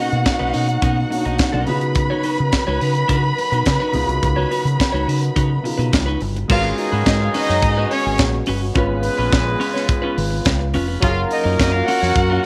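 A tight, up-front funk drum kit with a high-tuned snare drives this danceable disco excerpt in straight 4/4. A round, punchy dub bass with tube saturation sits underneath, alongside clean, compressed electric guitar with subtle chorus and a short-sustain baby grand piano. Expressive, vibrato-rich violins carry the second line over background French horn chords, and a smooth, octave-doubled pop horn section adds stabs from 6.5 seconds.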